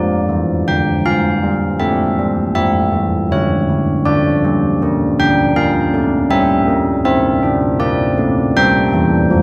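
A carillon plays alone and up front, its bronze bells ringing bright over a worn iron clapper, each stroke carrying the distinctive minor-third overtone. This is a short cut from a longer classical tune for church bells, solemn and wintry in mood, moving at a stately 80 BPM in a straight 3/4. The bells span D3 to G5 and are tuned slightly high, to A4 = 441 Hz. The harmony travels from G minor to A7 at 1.8 seconds, settles on D minor, returns to G minor, and closes on a bare A7 sonority at 8.6 seconds. A wet reverb in the manner of a scoring stage, with a 1.9-second tail, wraps the bells in a dark, warm production that lets every strike hang in the air.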